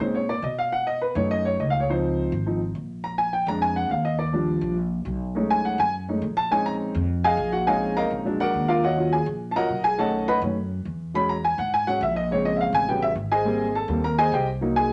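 A smooth, vintage grand piano sits up front and solos through the whole 14.9-second passage, its warm tone carrying this driving, sophisticated piece of Afro-Cuban jazz in Bb minor. The tempo is a brisk 207 BPM in a straight 4/4, and the piano moves through rich harmony such as Bbm11, Dbmaj9, B13 and Bb7b13 before a second pass turns to Ebm7, E6 and A13, landing on Abmaj7. Beneath it, a pizzicato upright bass with steel strings supplies a woody, dark low end, sitting well below the piano in the mix. The two instruments share a studio space with a noticeably wet but short reverb, and the top end is gently rolled off, giving the sound a soft, rounded edge. The piece is cut from a longer performance, so it begins and ends mid-stream.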